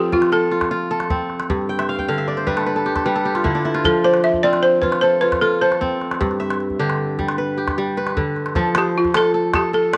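Hypnotic and flowing, this West African string and xylophone piece in 12/8 sets a woody, buzzing balafon melody struck with hard rubber mallets alongside ringing, crisp fingerpicked kora arpeggios, both sitting up front. A small calabash keeps the percussion in a small-room sound, while a moderate plate reverb lends the whole a gentle sense of space. The kora adds a fill from 1.7 to 3.8 seconds, and the balafon takes a solo from 8.6 seconds as this portion of a longer piece closes.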